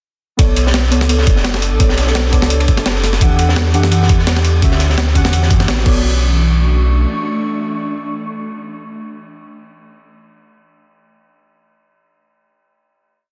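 This short liquid drum and bass piece rides a 170 BPM groove in 4/4 with a light swing on the sixteenths. A thumpy, gritty electronic kick and a pitched-up, sampler-style breakbeat kit of snares, closed hi-hat and crash roll in a two-step pattern, joined by a crunchy, dark-toned looped break with a high-tuned snare and smooth, rolled-off cymbals, all from 0.4 to 5.9 seconds. Underneath, a deep, full sub bass with its octave sits up front with long gliding notes, while a soft, detuned chord stab with chorus and delay carries held chords with syncopated pushes through Bm9, Em9 and Dmaj9. An ethereal, airy pad with a slow attack and ensemble chorus breathes in at 1.3 seconds, lending a lush, melancholic glow in B minor. After the drums drop away, the bass, pad and stab sustain a final hit, with the stab ringing on until 11.4 seconds, set in light digital ambience within a dense, heavily limited modern master.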